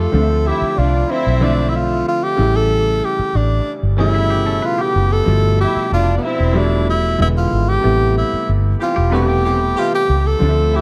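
Cinematic and silky, this brief cut from a longer piece is lush 1970s-style soul at 93 BPM in a straight 4/4, moving through Dm9, A7, G13 and E7 before settling on Am9. A breathy, close-miked tenor saxophone carries the melody up front with scooped notes and an analog delay, while a round, foam-muted electric bass sits equally forward underneath. A clear grand piano, its action noise audible, plays intimate accompaniment throughout, and a twangy, compressed clean electric guitar picks a riff in the background until 10.2 s. Veiled, con sordino strings add a bowed second line in short appearances, and a jazz-style horn section with a smooth top punches in with stabs from 8.8 s during a band accent. Light studio reverb and a dark, warm production give the whole a plush sheen.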